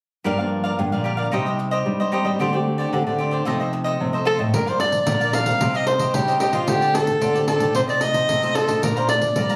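Samba and choro in G minor at 112 BPM, nostalgic and bittersweet, where crisp picked cavaquinho, a warm thumb-plucked nylon-string guitar bass and a dark fingerpicked second nylon-string guitar with finger squeak move through Gm7, Cm, D7sus4 and F7/C before a bright, close-miked soprano saxophone enters up front at 4.3 seconds with vibrato, subtone, scooped notes and plate reverb, joined by jingly soft-handed pandeiro at 4.5 seconds, all captured on a phone in a compressed club room in this cut from a longer piece.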